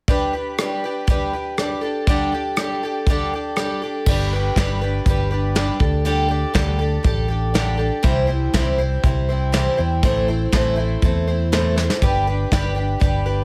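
A straight 4/4 pulse at 121 BPM drives this reflective, dusty stretch of folk rock and heartland rock, cut from a longer piece. A bright, shimmering twelve-string acoustic guitar, picked and octave-doubled with fresh strings, sits up front from the opening, moving between G and Dsus4. A soft brush drum kit plays alongside it throughout, with a medium-tuned snare, tight kick, rim click, hi-hat and crash cymbal. At 4.1 seconds a fingered electric bass joins with a dark, round, punchy amped tone, and the progression opens up through C and Am before returning to G. A drum fill at 11.8 seconds marks the close of the passage, and the whole performance sits in a small, intimate room.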